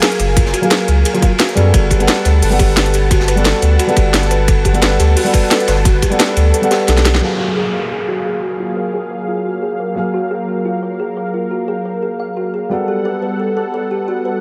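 A dark, intimate baby grand piano with audible action noise, a chorused sawtooth pad and a woody, hollow kalimba playing arpeggios open this lush, uplifting liquid drum and bass excerpt in F# major at 175 BPM, swung slightly on the sixteenths. The piano carries a low-pass filter and digital delay, the kalimba a low-pass filter and dub echo, while the detuned pad holds sustained chords with sidechain pumping over a movement between F#maj9 and Gmaj9. Two layered kits drive the opening drop: a tape-warm electronic kit with a cracking snare and crisp hats sits up front, blended with a dark, smooth breakbeat kit recorded in a small room with a rolled-off top, joined by a deep, round sine sub bass and a tight electronic kick. The kick falls away at 6.5 seconds, and a drum fill and band accent close the first half. By 7.2 seconds the drums and bass have stopped. A downlifter then descends beneath the remaining piano, pad and kalimba, whose filter sweeps through to the end at 14.4 seconds under a light reverb.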